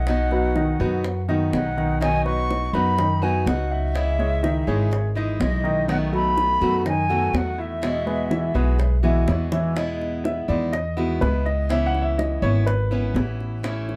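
Close, detailed microphones and little reverb give this dry recording an intimate feel, cut from a longer piece of relaxed, danceable Cuban son and guajira in E major at 124 BPM in a straight 4/4. An airy concert flute carries the melody with vibrato and tongued, expressive phrasing that sits at a distance, while a picked acoustic archtop guitar supplies boxy accompaniment, finger squeaks and all. A warm baby grand piano with a natural tone plays arpeggios, an upright bass up front gives woody, growly, thumpy pizzicato on steel strings, and low-tuned bongos add round, soft-handed percussion with a small-room sound. The flute drops out at 9.3 seconds, a drum fill follows at 9.5, and from 9.8 seconds the piano takes a solo over Emaj7 and C#m7 chords through to the end.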